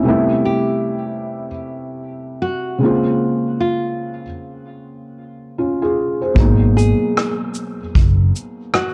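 Hazy and reflective, this brief lo-fi hip hop excerpt moves at 76 BPM with a swung feel, as a soft, boxy felt-muted upright piano with short sustain opens the piece through a low-pass filter over Am9, A#m9 and G#m9 chords. From 0.5 seconds a full-bodied, fingerpicked nylon-string guitar carries the melody with audible finger squeak, filtered and trailed by dub echo. At 6.4 seconds a dark, round, foam-muted electric bass and a brushed drum kit with a punchy kick, rim click, hi-hat, shaker and a rolled-off top join, all set in a small, lightly reverberant room within an echo-heavy, cassette-tape mix.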